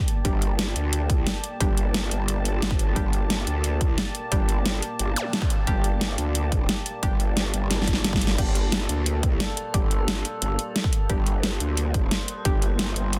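A dense, heavily limited and dry mix carries this aggressive, mechanical slice of dark technical drum and bass, cut from a longer piece. A punchy electronic kick and a layered dubstep kit with a huge snare and metallic hats sit up front beside a saturated, wobbling, pumping growl bass, while a deep, moody pad sustains and a muted, filtered dub chord stab with echo hovers in the background. An electronic zap flashes at 5.2 seconds, the drums play a fill at 7.7 seconds, and an eerie, wave-folded inharmonic drone enters at 8.9 seconds.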